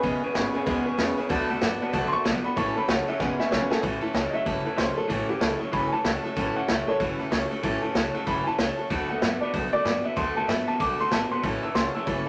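A dark, mellow upright piano carries the melody in this rollicking, rowdy rockabilly excerpt, swinging at 189 BPM in A major. Beneath it, a twangy electric guitar through a small old amp plays a bright, slightly broken-up, lo-fi riff in its low register, while a boxy parlour-style steel-string acoustic guitar picks out an accompaniment with fresh strings and audible finger squeak. A second, softer upright piano sits in the background with an open, woody tone, dropping out at 3.8 seconds and returning at 11.4 seconds. A thumpy pizzicato upright bass on gut strings anchors the bottom. A vintage drum kit sits up front with hi-hat, a punchy kick and a medium-tuned snare, its top end rolled off, and it plays a fill just before the piano-led opening gives way to the next section at 3.8 seconds. The harmony moves through E6, D6 and A6 chords, and a moderate club reverb gives the band a lively, close-knit room sound.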